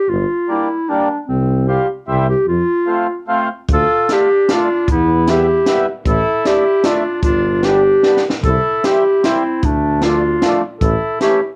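Heard through worn, warbling old cassette tape in a small room, this festive, bouncy alpine folk dance-band excerpt in swung, rubato triple time puts a smooth, soft-attack clarinet melody with slapback echo up front over a mellow tuba bass and a reedy, full accordion, with a distant, roomy trumpet second line and a compact cocktail drum kit with a punchy kick and high-tuned snare joining at 3.7 seconds, the drums adding a fill at 8.0 seconds.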